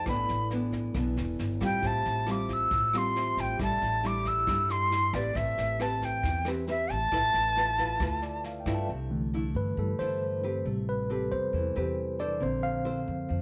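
Bossa nova at 136 BPM with a breezy, sophisticated mood, led by an airy jazz flute melody with vibrato and a crisp chiff over fingerpicked classical nylon-string guitar on old strings, clean tine electric piano chords, thumpy pizzicato upright bass and a brushed vintage kit with a punchy kick and rolled-off top. The flute's expressive line ends at 8.4 s, and the electric piano plays a short fill before taking a solo at 8.9 s as the music settles into C major. The drums drop out at 8.8 s, the woody bass and guitar carry on under the piano, and a light reverb sits over the piece, which is cut from a longer work.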